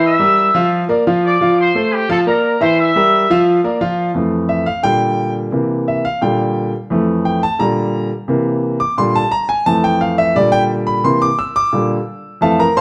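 A straight 4/4 Latin groove at 174 BPM carries this festive, danceable passage, where a bright, punchy trumpet section with light vibrato plays a tight, vintage pop-style melody until 3.4 seconds over a clear concert grand piano with deep bass and long sustain, and the piano then takes a solo from 4.2 seconds over a Fmaj7, Bb6 and C7 progression, all set in a large studio's moderate reverb.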